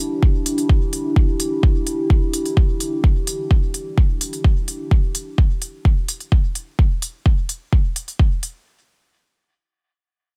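A dry, close-sounding mix opens this short slice of dub techno, a meditative and hazy piece in E minor at 128 BPM in a straight 4/4, tuned slightly flat to A4 = 436 Hz. A dark analog pad holds a sustained Em7 chord from the start, its detuned square, sawtooth and triangle layers with a sub octave giving a deep, moody body, shaped by a slow attack and long release and colored by chorus and phaser. Sidechain pumping makes the pad breathe against the beat before it drops out at 4.9 seconds. An up-front electronic kick drum, layered and deep, arrives at 0.2 seconds and carries the groove as the loudest element. Smooth, produced hi-hats join just after and sit well beneath the kick, running with it nearly to the end of the cut.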